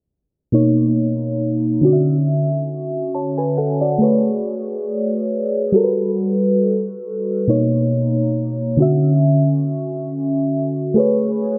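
A slow 4/4 groove at 69 BPM with a light swing on the sixteenths sets up this romantic, dreamy R&B fragment, cut from a longer piece. A single FM electric piano layered with a soft pad carries everything alone from 0.5 to 11.6 seconds, ranging from B2 to A5 and sitting up front in the mix. Its tone is lush and mellow, with a fast attack, decaying notes, a triangle-like core and a noise layer, colored by chorus, phaser and digital delay. The harmony drifts through rich major ninth chords, moving from Bmaj9 to Dmaj9, Amaj9 and Gmaj9 before cycling back through Bmaj9 and Dmaj9 to land on Amaj9 at 11.0 seconds. A filter sweep runs across the whole passage, and light reverb with a low-pass filter gives the sound a soft, hazy finish.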